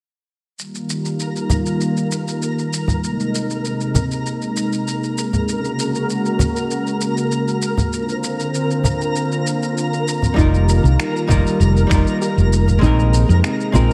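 A thick, detuned unison pad sits up front, holding sustained suspended chords under a filter sweep, while a twinkling granular shimmer, close and dry congas, and gritty, tape-toned shaker and finger snaps set a sunny, blissful chillout mood in this passage cut from a longer piece. At 10.3 seconds, a dark, clean archtop guitar enters with picked accompaniment through delay. A moment later, at 10.4 seconds, a woody fretless bass enters up front alongside a thumpy electronic kick in the background and a soft, round pluck playing arpeggios through chorus, tape coloring and delay. A lush hall reverb surrounds the mix.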